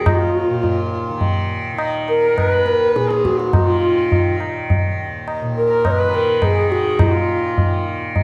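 Hindustani classical music in raga darbari on Eb, meditative and introspective at 104 BPM in 3/4, where a hollow, pure bamboo bansuri carries the melody with vibrato and tongued notes, a dark, intimate sarangi traces a gliding second line with portamento and an airy bow, a softly plucked tanpura shimmers and buzzes beneath as the drone, and close, dry, high-tuned tabla enters at 0.1 s up front, all set in a moderate recital-hall reverb in this short excerpt from a longer piece.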